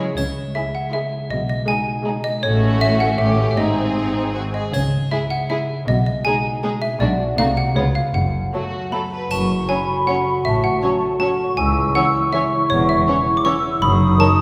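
Heard from further back in a wet scoring-stage reverb, this sneaky, whimsical cinematic cue in 3/4 at 159 BPM moves from C# minor toward F# minor at 7.0 s, with a woody, sharp xylophone carrying the melody up front over ringing, thumb-plucked concert harp arpeggios, a focused, rich cello and double bass section on the bass, a smooth viola section, two clear, vibrato-laden violin sections on melody and second line, and brief entries of close triangle, until at 9.3 s an airy flute section, a dark, distant cor anglais and a mellow clarinet join with quirky second lines.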